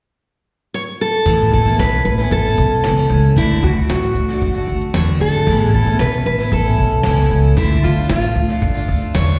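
A straight 4/4 pulse at 114 BPM carries this easy-going, heartfelt acoustic pop excerpt in A major, where a warm, up-front fingerpicked dreadnought guitar enters with the melody at 0.7 seconds, coloured by slapback echo. At 1.3 seconds a bright, double-tracked picked jumbo guitar, a woody, dark pizzicato upright bass on gut strings, and a gritty, compressed sampler-style drum kit with a thumpy kick, fat snare and shaker come in together, moving through Aadd9 and D before a turn to Dm at 7.6 seconds. The sound is that of a live gig heard through the venue's PA, with the light reverb of a recital hall.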